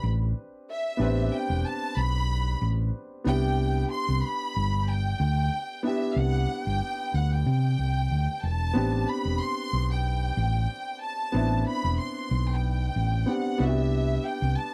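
A bowed violin section, a clear grand piano and a round, dark hollow-body electric bass begin together in this lush, bittersweet 1970s-style soul passage at 93 BPM in A minor, with a gentle swing on the sixteenths. The smooth, even violins carry the melody high with vibrato, the present piano supplies accompaniment in the middle register, and the fingered, amped bass sits up front and loudest as the harmony moves between Am11 and Cmaj9. The dry, close studio sound gives the cinematic mood an intimate feel, cut from a longer piece.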